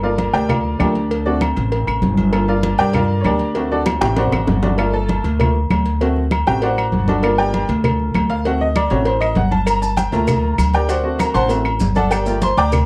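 Heard through worn, warbling old cassette tape with light reverb, this driving, fiery salsa excerpt in G minor at 196 BPM features a brilliant, slightly detuned upright piano soloing up front over alternating Gm7 and D7 chords, backed by a dark, thumpy pizzicato upright bass on gut strings, hard-hand congas with a thin skin, ringing agogo bells and timbales, round, low-tuned cowbell and bongos in the background, woody claves, and grainy maracas that enter at 9.7 seconds, with a drum fill from 3.9 to 4.8 seconds.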